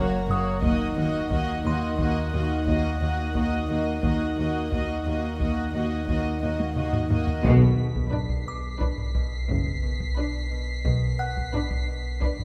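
A cinematic suspense film score cue in 5/4 at 88 BPM, eerie and mysterious, cut from a longer piece and moving from F# to D# minor and then to B minor. Bowed symphonic violins carry a floating, sul tasto melody over a second violin line, a dark, woody viola section adds lush vibrato accompaniment, and a bright, ringing concert harp plays a fingerpicked riff in its low register. Cellos and a chamber double bass section hold the bass softly in the background until 11.4 s, joined by an ominous, rumbling drone treated with built-in reverb and phaser. High above, a studio violin section floats as a faint texture, joined at 0.3 s by a delicate, tinkling music box that sounds slightly out of tune. Close, hard-stick taiko drums enter at 0.6 s and play a fill from 6.6 s that leads into a full ensemble accent at 7.4 s, where a very quiet timpani on B sounds briefly, all set in a light reverb.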